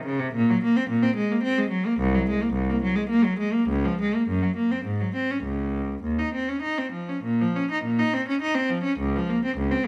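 A lone bowed cello opens this short passage from a baroque-style suite movement, its clear, focused tone carried with vibrato by a single player placed up front. The grave, flowing line moves in a rubato triple metre, ranging from C2 up to Eb4. A moderate recital hall reverb surrounds the instrument, and the opening phrase returns at 7.2 seconds before the passage breaks off at 9.9 seconds.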